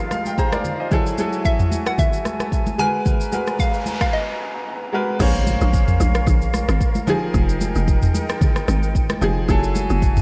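A hollow, bouncy log drum bass lands up front at the drop at 5.2 seconds in this soulful, late-night amapiano excerpt, joining a produced, deep-kicked drum kit, ringing hand-played congas in the background, a brilliant baby grand piano, airy flute chords with vibrato and sidechain pumping, and a background noise sweep and impact, after a warbling, detuned square pluck melody has played from 1.5 to 4.9 seconds, all inside a dreamy mix soaked in plate reverb.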